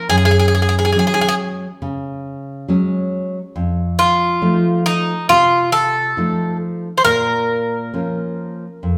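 A slow, rubato pulse in four guides this short fado fragment, lifted from a longer piece, its time stretching freely with a longing, passionate mood. A Greek bouzouki carries the melody in a middle register, its picked double strings sounding bright and metallic, with some courses doubled at the octave for an extra shimmer. Beneath it, a nylon-string guitar fingerpicks the accompaniment from its deep bass upward, full-bodied and classical in tone, entering at 0.1 seconds as the harmony moves from Gbsus2 to F7 and settles on Bbm at 7.0 seconds. Both instruments sit up front, heard as a duo playing live together in one room. A wet, large studio reverb with a 1.3-second decay wraps the performance, giving the playing a spacious glow.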